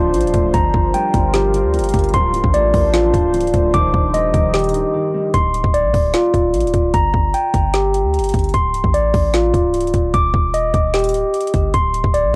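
Eerie and dark, this half-time hip hop and trap excerpt at 150 BPM in D phrygian sets a boxy concert grand in the background and a detuned, wave-folded pad with chorus and reverb beneath a mellow tine electric piano, whose tape-echoed arpeggios run throughout, while a punchy sine 808 and an up-front trap kit with hard-clipped kick, woody snare and metallic hats carry on after the grand and pad drop out around 5.3 s, all captured as a dry cassette home recording.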